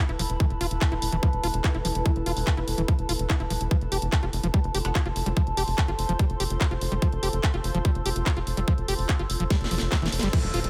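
The up-front kick drum sits at the heart of this driving, psychedelic trance excerpt at 145 BPM in straight 4/4, a tight, tape-warm electronic thump that enters at 0.4 seconds. Beneath it a dark, punchy sequencer bass of sawtooth and square waves pulses low in the register with a fast filter pluck, while a squelchy, gritty acid bass riff sits further back, distorted and resonant with digital delay. A drone of moving overtones, colored by ring modulation and chorus, holds sustained chords alongside a cloudy, blurred granular pad, both breathing with sidechain pumping under their own reverb. The layered garage kit adds a cracking snare, handclaps, hi-hat and crash, and a brief, very quiet metallic wobble bass flickers in around 4.8 seconds. The harmony moves from E5 to F5 at 3.7 seconds, a drum fill runs into a band accent at 10.2 seconds, and a background downlifter closes the passage under light overall reverb.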